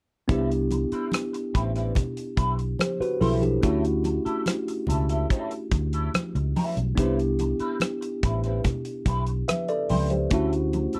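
From 0.3 seconds, a mellow, slightly out-of-tune tine electric piano, a dark, round, foam-muted fingered bass, a soul drum kit with a tight kick, hi-hat and rim click, soft-handed congas, and a slightly broken-up electric guitar riff through wah and ensemble chorus sound together in this lush, warm 1970s-style soul excerpt at 72 BPM in 4/4, moving between Cmaj7 and Dmaj9 in a dry, close studio sound.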